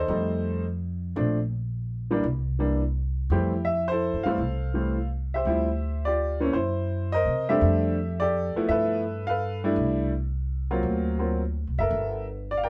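A live, one-room studio sound with moderate reverb frames this playful, warm jazz excerpt in swung 3/4 at 168 BPM, where a clear, smooth upright piano with a vintage character and long sustain carries the melody up front while a woody pizzicato upright bass on steel strings anchors the low end, the harmony moving from F major to D minor at 5.5 s through rich chords such as Fmaj9, F#7#11 and D7alt.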